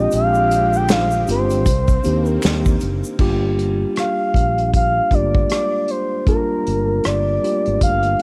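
Introspective and soulful, this short neo-soul and R&B excerpt moves at 78 BPM with a swung sixteenth-note feel, as a smooth, vibrato-tinged sawtooth synth lead carries the melody up front over a mellow tine electric piano with cassette tape colour and a round fretless electric bass. An acoustic drum kit played with bundle sticks, featuring a punchy kick, medium-tuned snare, rim click, hi-hat and crash, sits up front through cassette tape, while a lush, detuned unison pad with chorus and phaser glows in the background alongside a soft egg shaker, finger snaps and group handclaps until both drop out at 3.2 seconds. The harmony passes from Bb13 to Cm9 before settling on Gm7, all in an intimate small-room home recording made on cassette.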